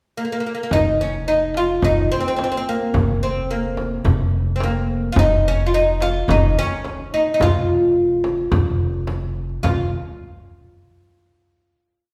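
A bright, plectrum-plucked fretless oud opens alone at 0.2 s, playing an ornamented modal melody up front in this hypnotic, melancholic Arabic maqam ensemble piece in straight 4/4. At 0.7 s a woody pizzicato upright bass on steel strings joins, sitting on a low F and following the low drum strokes, while a crisp metal-shell darbuka in the background and a deep, large frame drum each play low and high stroke patterns. The whole short piece rings in the lush reverb of a recital hall, with the last note sustaining from 9.6 s.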